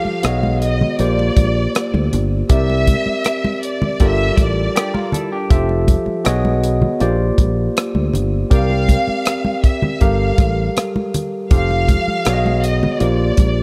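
A bowed studio violin section carries the melody with expressive vibrato and portamento over a barky, lightly overdriven tine electric piano and close, damped congas, opening this romantic, smooth excerpt of lush 1970s-style soul in a straight 4/4. A growly, punchy fingered bass and a dry, tight funk kit of kick, hi-hat and rim click sit up front in a small room, while chords move through B6, Bb6, C7 and Gm9 to Fmaj7. A clean, twangy picked electric guitar adds a brief compressed riff from 4.8 to 5.7 seconds.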